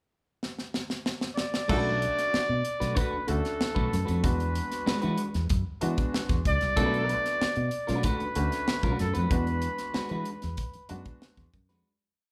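Recorded as a band playing live in one large, reverberant studio room, this sly, driving funk piece opens with a drum fill at 0.4 s from a tight, dry, up-front kit before the syncopated groove, full of ghost notes, settles in at 1.7 s. A round fingered electric bass anchors the downbeat with muted ghost notes and chromatic approach notes, while a clean electric guitar picks clipped chords and a woody, slightly detuned upright piano pushes rootless stabs over alternating Bm7 and E9 chords. A mellow, soft-attack trumpet carries a jazz-style motif of call phrases, a distant subtone tenor saxophone adds two brief scooped stabs, and the whole piece fades out from 9.3 s.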